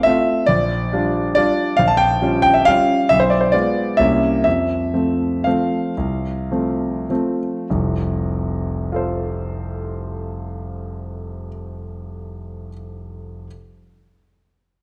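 Dark, reverberant recital-hall sound surrounds an intimate, up-front concert grand with deep bass and audible action noise in this elegant, graceful excerpt of a classical piano waltz in F major and 3/4, played solo with rubato between 96 and 145 BPM, slowing from 3.8 to 7.7 seconds as the harmony passes through a diminished seventh and C7b9 to settle on F at 4.5 seconds before a contrasting passage.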